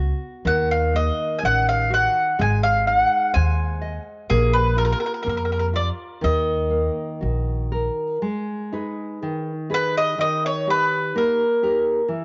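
A fado-style ballad excerpt with a longing, mournful mood, moving at a rubato 62 BPM in 2/4 and shifting from Eb minor to G# harmonic minor at 8.2 s. A mellow, round mandolin carries the melody on picked double strings with a cassette-tape colour, over a full-bodied, fingerpicked nylon-string guitar with fresh strings and audible finger squeak, and a woody pizzicato upright bass that drops out at 7.9 s. The home cassette recording sits in a moderate spring reverb, with dulled highs giving the intimate sound a faded, homespun character.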